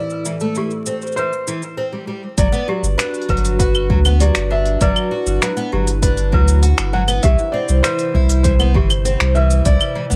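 Vinyl crackle and small room ambience frame this delicate, hopeful folktronica excerpt at 99 BPM in G major, where a soft, felt-muted upright piano with audible action noise carries the melody over shimmering, octave-doubled fingerpicked twelve-string acoustic guitar arpeggios, a warbling, nostalgic lo-fi pad with chorus and 12-bit grit in the background, a clanky, bell-like, slightly out-of-tune toy piano second line, and an organic electronic kit of claves, finger snaps, shaker and smooth hats, until a round sine sub bass and a deep electronic kick arrive at 2.4 seconds as the chords move from Am7 to Gmaj7 and then C.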